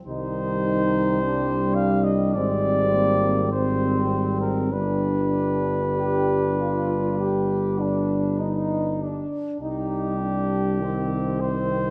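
Yearning and solemn, this short passage cut from a longer hymn-like classical piece for brass band moves slowly and freely in rubato at around 47-53 BPM in 4/4, set in C minor with a tuning of A4 = 436 Hz. A mellow cornet carries the melody up front, while a French horn section sounds warm, distant and roomy as it sings a second line beneath it. Lower down, a euphonium sits in the background with a warm tone, and a very quiet trombone with light vibrato and a smooth top adds accompaniment until it stops at 9.0 seconds. A tuba with light vibrato anchors the bass up front, giving the ensemble a rounded, mellow foundation. The harmony passes from C minor through Abmaj7 to G before returning to C minor at 9.6 seconds, all heard within a wet recital hall reverb.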